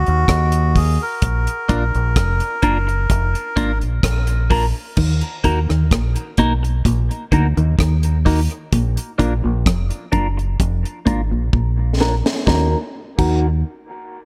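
Hypnotic and meditative, this dub reggae excerpt moves at a slow 64 BPM in Eb harmonic minor, opening with a break as a reedy, breathy melodica line with dub echo plays until 3.8 seconds over a round, dark fingered bass and a dry, up-front drum kit with a high-tuned snare, tight kick, rim clicks, hi-hat and crash. A clean, compressed electric guitar enters at 1.7 seconds, picked through phaser, low-pass filter and dub echo, while from 5.0 seconds a hollow-body semi-hollow guitar riff sits in the background with tremolo and echo under a filter sweep. Chords shift between Ebm and Bb, and a drum fill leads into the closing return to Ebm, all in a small room with light reverb.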